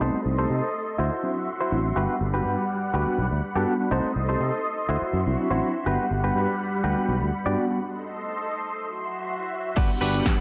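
A dreamy mix soaked in lush hall reverb opens this short cut from a longer filtered disco house track, a funky, feel-good groove at 123 BPM in G major with a light swing on the 16ths. A filter sweep runs across the first 9.8 seconds, with every melodic part sitting behind its low-pass filter and pumping against the sidechain. A mellow tine electric piano colored by phaser and a vintage sawtooth string machine, thick with ensemble chorus and slow-attack swells of sustained chords, carry the harmony through Cm6, D9 and Gmaj7, later turning to C. A bright, twangy clean guitar picks a compressed riff, while a growly fingered electric bass sits up front. After a break from 7.8 seconds, the drums arrive at 9.8 seconds with a punchy, layered electronic kick and an overdriven analog drum machine adding a dry snare, hi-hat and crash cymbal as the chords land back on Gmaj7.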